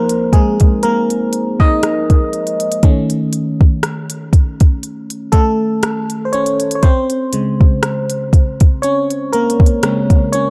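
A glassy FM electric piano opens the music at 0.0 seconds, its bell-like attack and chorus-touched warble carrying a vintage, faintly noisy shimmer as it takes the lead through chords moving from Ab69/F to A and then Bbm9. At 0.1 seconds a smooth, electronic R&B drum kit joins up front with a soft kick, crisp hi-hats and rim clicks, settling into a slow 60 BPM groove with a light 16th-note swing. Set in a dark digital ambience, this sensual, longing contemporary R&B passage feels cut from a longer piece.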